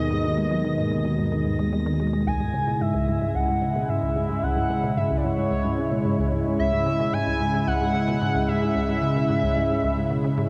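Ambient, sequencer-driven space music in C# minor at 111 BPM, hypnotic and mysterious, where a shimmering, warbling pulse-width lead carries the melody with vibrato, chorus, shimmer reverb and delay over an evolving, up-front sawtooth pad holding sustained chords with shimmer reverb and a juicy, squelchy blip pluck riff with delay, while a bubbling stepped-filter texture sits in the background until 2.3 s as the harmony moves from Abm/Eb to C#m, all bathed in a huge, wet reverb and a cassette-tape character.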